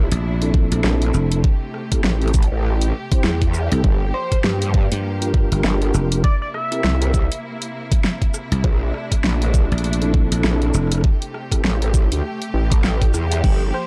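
A wobbling, detuned growl bass with chorus sits up front in this gritty, swaggering glitch hop excerpt at 100 BPM with a 16th-note swing, joined by a bright, foam-muted thumbed slap bass while an overdriven, knocking electronic kick and a pop kit with a fat snare, hi-hat, rim click, shaker and crash drive the groove. A soft, flute-like tonewheel organ with key click, sampler grit and delay plays stabs over distant, lush bowed strings that pump with sidechain through chords moving from Bbmaj9#11 to Am7, Gm7 and C7. An edgy, tearing sync lead with vibrato carries the melody from 4.1 s to 7.4 s, all inside a dark, dry production.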